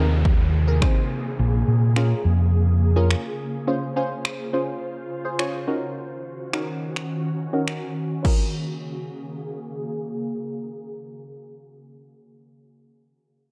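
A glassy, crystalline wavetable pluck with chorus, sidechain pumping and a filter sweep carries this confident, energetic dance-pop excerpt in Bb minor at 105 BPM, over an ethereal, detuned pad, a round, amped fingered electric bass that stops at 3.1 seconds, an opening downlifter, and a punchy, overdriven analog drum machine of kick, finger snaps and crash cymbal that plays until 8.4 seconds, moving through Abadd9, Bbm7, Dbmaj7 and Ebm7 in a dark production with light digital ambience.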